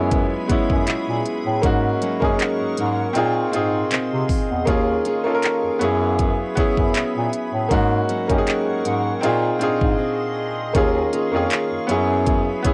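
Contemporary R&B with a late-night, sensual mood, cut from a longer piece: a clear, intimate baby grand piano with audible action noise sits up front over cycling suspended ninth chords, a glassy, ethereal FM pad with ensemble chorus sustains chords above, a fingerpicked nylon-string guitar plays arpeggios through analog delay in the background, a breathy bass clarinet with vibrato carries the bass in a punchy jazz style, and an electronic drum kit with a knocking kick, crisp hats and handclaps, entering at 0.1 seconds, gives the lightly reverberant home cassette recording its lightly swung groove, with a brief break at 10.0 seconds.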